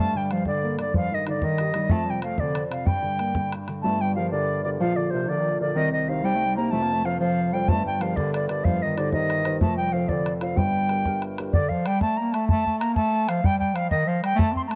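Celtic folk jig in G minor at 125 BPM in 6/8, driving, dark and lively, cut from a longer piece. A bright, reedy baroque flute carries the melody up front with a pure, straight tone and crisp attack, while a bass clarinet plays a second line beneath it in a warm classical style. A dark upright piano with a woody, natural character and long sustain supplies the accompaniment until 11.5 seconds, moving through Gm, Ebmaj9/G, F, Bb and Cm before the harmony drops away. A boomy, open bodhran sits close and up front, playing from 0.3 seconds, pausing at 3.7 seconds and returning at 7.7 seconds through to the end. The final stretch from 11.5 seconds shifts to a new section with flute, bass clarinet and bodhran alone. Moderate spring reverb and a dark, warm production shape the overall sound of the recording.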